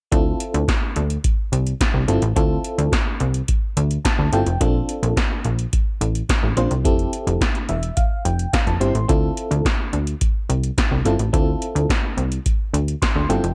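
A plucky, sawtooth-edged analog bass, an electro drum machine with a deep kick, punchy snare, metallic hats and gated reverb, and a mellow FM electric piano with tremolo all start together in this late-night, danceable slice of early-eighties boogie funk, cut from a longer piece. Over a straight groove in a digital ambience, the electric piano comps through Dm9, Bbmaj9 and Fmaj9 before returning to Dm9, adding fills at 3.8, 7.4 and 12.7 seconds. The bass and drums sit up front, and the drum machine carries the character of a small room.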